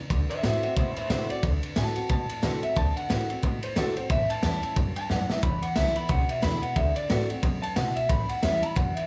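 A twangy electric guitar played through a small old amp carries the melody, its bright, slightly broken-up tone coated in plate reverb and tape echo as it takes a clean solo across this short, rowdy rockabilly excerpt cut from a longer piece. Underneath, an upright bass gives woody, thumpy pizzicato on gut strings, while a raw garage drum kit sits up front with a punchy kick, a medium-tuned snare and ride cymbal, its gritty, saturated sound and rolled-off top pumping in a small room. A full-bodied dreadnought acoustic guitar, picked and touched with plate reverb, fills in the accompaniment further back. The swung groove moves through D7, A7 and E7 changes, and the drums break into a short fill at 5.1 seconds before the E7 arrives at 5.4 seconds. Light room ambience gives the whole performance a retro character.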